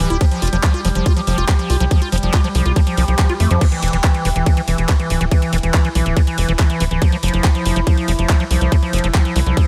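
A punchy, dark sequencer bass sits up front, driving this intense, hypnotic psychedelic trance excerpt at 141 BPM in straight 4/4, with an overdriven electronic kick entering at 0.2 seconds. A squelchy, resonant acid bass riff with chorus, dub echo and sidechain pumping rides above, while a slow-attack drone of sustained chords with moving overtones, phaser and built-in reverb pumps quietly alongside. An overdriven garage kit adds handclaps, hi-hat, ride and crash cymbals in a digital ambience, over chords moving from F5 to E5 at 3.6 seconds and back to F5 at 7.0 seconds.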